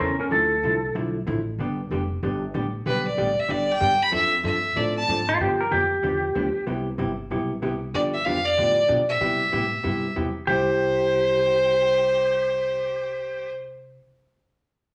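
Set in a large studio with a generous wash of reverb, this short country cut has a down-home, playful mood and a brisk 189 BPM swing in C major. A clear, smooth fiddle carries the melody up front, its light vibrato and even bowing entering at 2.9 seconds and returning at 7.9 seconds to lead through the later passages. A twangy lap steel, played with a slide and sitting forward in the mix, supplies a second line in short phrases, including one that opens at 10.5 seconds. Underneath, a dark, picked hollow-body jazz guitar keeps up the accompaniment from start to finish, while a woody, thumpy upright bass is plucked low beneath it. The harmony moves through Dmadd9, G and Dm7/F to G7 and Cmaj7 before settling on C.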